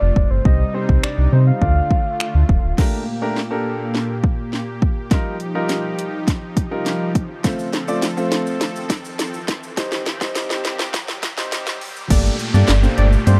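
An overdriven house drum kit with a punchy kick, cracking snare and bright hats drives this energetic dance-pop excerpt in G minor at 103 BPM. Around it sit a deep sine sub bass with octave, a smooth detuned supersaw holding sustained chords and a polished grand piano, with the bass, supersaw and piano pumping to the sidechain. A round, dark octave-layered synth lead with chorus, phaser and tape echo sings briefly at the opening, then a build-up with a drum fill, filter sweep, background riser and downlifter and a grainy, distant tube shaker leads to a drop at 12.1 s, where a fat, mellow analog lead with vibrato takes the melody as the bass returns, in a dry, close 1970s-style studio sound.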